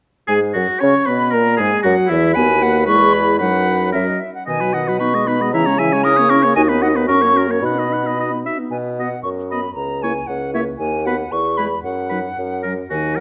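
Cheerful and spirited, this quick classical-period movement for wind quintet moves at 114 BPM in 2/4 with a rubato feel in B major, its phrase heard twice across about 13 seconds and cut from a longer piece. A pure, metallic silver flute carries the melody with vibrato and a soft attack over a clear, punchy oboe second line with a smooth top, while a mellow French horn and a clarinet set back in the background supply accompaniment above a dark, roomy bassoon bass that sits up front. Close, detailed microphones capture the ensemble in a recital hall with moderate reverb, and the harmony circles through tonic and dominant chords with a brief turn to C# minor around 5.5 seconds.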